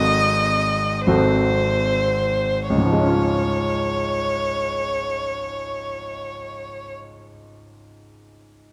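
Tender and warm, this romantic classical duo excerpt moves at a rubato 37 BPM in Db major, slowing through its opening seconds as an Ab7b9 chord settles onto Db at 2.7 seconds, with a rich, focused solo violin singing a bowed melody with vibrato up front until 6.9 seconds while a bright, brilliant grand piano spreads an open accompaniment that carries on alone to 8.7 seconds, all set in a dark production with the lush reverb of a scoring stage.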